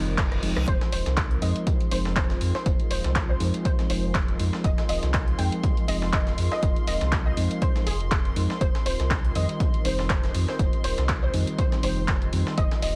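A dense, heavily limited mix with light reverb and a faint mains hum carries this smooth, moody deep house cut in F minor at 121 BPM, swung on the 16ths and moving from Cm to Fm7. A reverse cymbal opens the track. From 0.2 seconds a drum fill leads in as an up-front, punchy electronic kick, a small-room analog drum machine with handclaps, hi-hat and rim click, and a gritty, pitched-up breakbeat sampler kit with filtered hats and snare settle in under a deep sine-and-triangle sub bass with octave that pumps with the sidechain. From 0.7 seconds a soft, round pluck with 12-bit sampler grit and tape echo carries the melody over dark FM electric piano stabs through chorus and analog delay. Meanwhile a silky vintage string machine, an ethereal detuned pad and a reedy, gut-string chamber violin section hover in the background.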